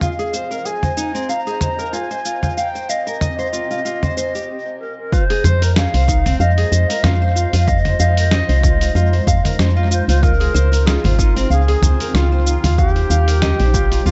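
Mystical and warm, this excerpt from a longer organic downtempo piece moves at 94 BPM in F minor with a lightly swung sixteenth-note feel. A bright, reedy ney carries the melody with an airy straight tone and soft attack, its phrases trailing into dub echo. Beneath it, a fingerpicked nylon-string guitar plays classical-style arpeggios through analog delay, with finger squeak audible. A cloudy granular pad sits in the background, holding blurred, evolving chords with a slow attack, long release and sidechain pumping. A gritty, tape-warm sampler-style kit of hi-hat, shaker, snare and toms runs throughout with tape echo. After a short break ending at 5.1 seconds, an overdriven, punchy electronic kick arrives, and a round, woody FM bass enters up front at 5.4 seconds. The echo-heavy mix has a dusky top end as the chords shift from Ab69 and Eb69 to Fm7, Dbmaj9 and back to Eb69.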